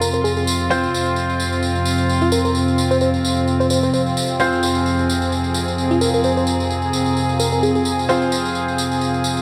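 A bouncy 130 BPM 4/4 groove with 16th-note swing drives this gritty bass house excerpt in F minor, where a sparkling, bell-like FM electric piano carries the chorused, tape-echoed melody until 7.8 s over up-front, nasal chamber strings holding bowed chords, filtered stabs from a bright, worn grand piano, a jingly vintage tambourine and a deep, detuned ambient pad, all set in a lush hall reverb.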